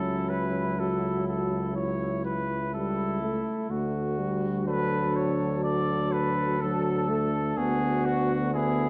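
A straight, stately 4/4 pulse carries this triumphant classical brass quintet fragment, where a vintage-toned trumpet sings the melody up front over a second trumpet with light vibrato, a mellow French horn set distant in the background, a warm euphonium and a roomy tuba bass up front, bathed in a wet recital-hall reverb with a dark, warm production as the harmony moves from A7/C# to D at 3.7 s and E7/D at 7.6 s.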